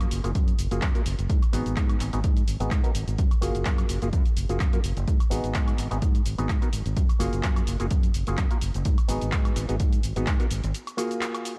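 A punchy, up-front electronic kick drives this funky, groovy filtered disco house excerpt at 127 BPM in G# dorian, entering at 0.4 s and dropping out at 10.4 s, while a direct fingered electric bass pumps under sidechain and a low-pass filter beneath a filter sweep. An auto-wah clav through a combo amp adds a percussive, stringy, mellow accompaniment with phaser and pumping, as an analog drum machine re-recorded in a small room supplies handclaps, hi-hat, shaker and woodblock with a lightly swung 16th feel. The harmony alternates between F#maj9 and G#m7 in a dark, warm production, and the bass stops at 10.7 s for a brief break.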